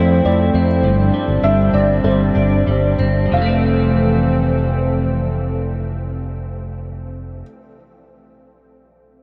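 A straight 4/4 pulse that slows over the first 3.3 seconds, moving within 91-104 BPM, carries this blissful, floating dream pop piece in F major, where a round, up-front fretless electric bass anchors Fmaj7 and Gsus4 chords beneath picked, twangy arpeggios from a clean electric guitar run through analog chorus and delay, a hollow, flute-like soft pad holding detuned sustained chords with chorus until 6.7 seconds, and a felt-muted upright piano carrying a mellow, intimate melody through analog delay, the whole mix soaked in a huge ambient reverb.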